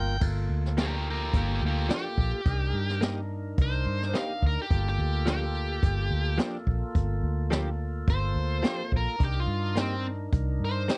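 Brooding and mournful, this straight-eighth soul blues excerpt in G minor moves at 107 BPM, with a percussive tonewheel organ turning slowly through its rotary speaker and a dark, foam-muted fingered bass sitting up front over Gm7 and Cm7 chords. Brushes on the drum kit bring a boomy kick, a high-tuned snare and dusky cymbals from 0.2 seconds, and at 0.8 seconds a smooth overdriven lead guitar with slapback echo takes the melody while a clean, compressed electric guitar, recorded direct and shimmering with analog chorus, adds stabs. The sound is dry and close, like a 1970s studio session.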